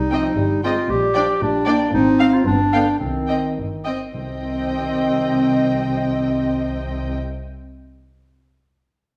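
In a straight 2/4 at 105-116 BPM that slows between 1.4 and 4.1 seconds, this dramatic, restless classical-period orchestral passage in C minor, cut from a longer piece, sets a clear, up-front solo clarinet line over mellow French horn chords, with veiled, con sordino violin sections carrying the melody and a second line, a background viola section, cellos and double basses holding the bass, and hard-mallet timpani at the start and again from 4.1 seconds, the harmony moving through Cm, Gm/Bb, Fm/Ab and G7 back to Cm in a reverberant recital hall.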